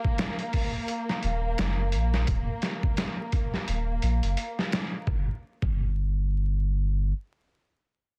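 Smoky, brooding trip hop at 86 BPM with a 16th-note swing, where a dark, woody violin section holds a sustained bowed chord with vibrato until 5.1 s, a muffled, pitched-down sampler-style drum kit with thumpy kick, medium-tuned snare and hi-hat sits up front with tape-like warmth until 5.8 s, and a deep, round dub sub bass enters at 1.2 s, all within digital ambience and vinyl crackle in a dense, heavily limited master, cut from a longer piece.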